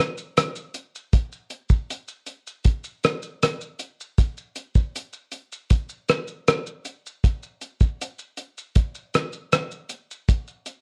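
A worn, warbling cassette sound colors this short clip, with pitch drift wavering through a moderate studio reverb. It is laid-back, sunny indie pop in a straight 4/4, cut from a longer piece. The only part is a cloth-damped, thuddy acoustic drum kit of hi-hat, kick drum, rim click and shaker, playing from 0.0 to 10.8 seconds. The kit sits up front and sounds dry, dark and smooth, with a tight kick and a rolled-off top. A brief opening passage gives way to a new section at 1.1 seconds that carries on to the end.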